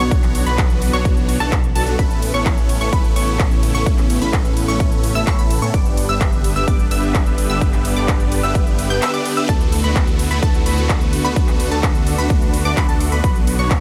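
Festival progressive house at 128 BPM in D major, uplifting and triumphant, where huge phased supersaw chords carry the riff over a thick, chorused detuned saw bass, lush delayed pluck arpeggios up high, a rich bowed string section sustaining chords in the background, all pumping with sidechain, while a punchy overdriven kick sits up front beside crisp-hatted claps and ride, a very quiet reverse cymbal rises at 9.1 seconds, and the chords move from Bm through Aadd9 and G to D6 in this dry excerpt from a longer track.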